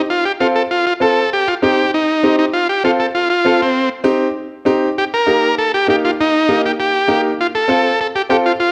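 Latin music at a brisk 198 BPM in straight 4/4, this short excerpt from a longer piece burns with a passionate, fiery mood. A vintage combo organ carries the melody from 0.1 s, its buzzy, clean tone shaped by heavy vibrato and placed up front in the mix. A bright upright piano supplies the accompaniment from 0.4 s, sounding brilliant and woody, with audible action noise, short sustain and an intimate, polished presence close to the listener. The harmony alternates between F and Cm before moving to Eb at 5.0 s and returning to F near the close. A large studio reverb bathes the performance in a wet, roomy ambience that gives the small pairing a spacious sound.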